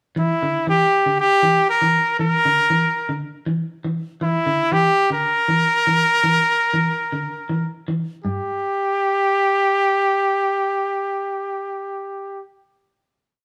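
A clear, close-miked trumpet leads this short, complete afrobeat piece, playing a motif-based melody of call phrases with light vibrato and a pop-style delivery, sitting up front from 0.2 to 12.4 seconds. Beneath it, a clean electric guitar, warm and picked, holds down an arpeggiated ostinato in its low register, also up front, until it stops at 8.4 seconds. The groove moves at 119 BPM in 4/4 with a gentle sixteenth-note swing, rooted in G dorian over a single rootless Gm6 chord that gives the mood a defiant, funky edge. At 8.2 seconds the harmony drops away, and the trumpet carries a final held note to the close. The band plays live together in one room, wrapped in a moderate stone-room reverb that adds a natural sense of space.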